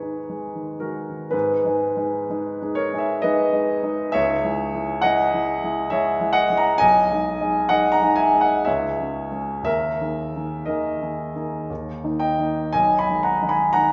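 Classical romantic nocturne for solo piano in G# minor and 3/4, its yearning, wistful mood unfolding in rubato at roughly 57-70 BPM, with a warm, open concert grand sitting up front, spanning B1 to B5 with deep bass and long sustain, moving through C#m and a D#sus4 that resolves to D# before settling on G#m/B at 12.7 seconds, all bathed in the wet bloom of a hall-like 1.8-second reverb with a softly rolled-off top end.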